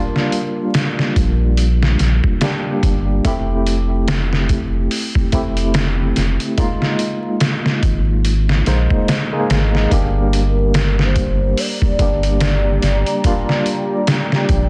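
Dense, heavily limited and dry with a layer of vinyl crackle, this smoky, cinematic trip hop excerpt in G dorian sways at 72 BPM with a swung 16th feel, as a bright, barky, lightly overdriven tine electric piano with fast tremolo sits up front beside a gritty, pitched-down sampler-style drum kit with a thumpy kick, a round, deep dub sub bass that enters at 1.2 s, a pure, breathy sine lead with vibrato and portamento heard briefly at the opening and again from 10.5 s, and a moody, detuned ambient pad that comes in from 11.5 s in the background.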